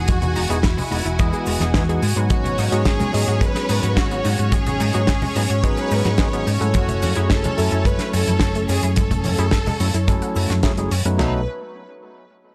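Nu-disco at 108 BPM in a straight 4/4, this sunny, feel-good passage is cut from a longer piece and tuned slightly flat to A4 = 438 Hz, moving through Emaj7, G#m7 and F#m9 before landing on B7 at 11.2 seconds. A rich, expressive studio violin section carries the melody with bowed vibrato and a tape echo, while a barky tine electric piano through a combo amp and a lush, detuned sawtooth pad with chorus and a slow attack fill out the harmony, both breathing with sidechain pumping. Underneath, a dark, round hollow-body short-scale electric bass holds down the low end, and a punchy, warbling vintage pluck spins arpeggios in the background with a cassette-tape tint and its own echo. The damped 70s drum kit sits up front with a tight kick, medium-tuned snare, toms, dark china cymbal and a rolled-off top, joined by a second kit layer of hi-hat and snare in a small room, plus close, hard-handed cabasa and congas set further back. 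The overall sound is dry and gritty, with little reverb and a hardware character.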